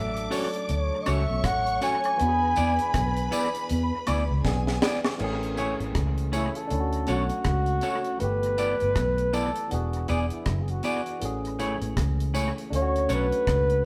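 Lovers rock reggae with a sweet, smooth mood and a lilting swung feel, cut from a longer piece and played by a band together in a wet stone room. A mellow flugelhorn with light vibrato and scooped notes carries the melody over a lush bowed string section, which stops at 5.2 seconds after a drum fill, when the horn moves into a jazz-style solo. Underneath sit a barky tine electric piano through a combo amp, a round, foam-muted electric bass up front, a dry reggae kit with a high-tuned snare, tight kick and dub echo, dark picked electric guitar stabs, and tambourine and woodblock tucked in the background.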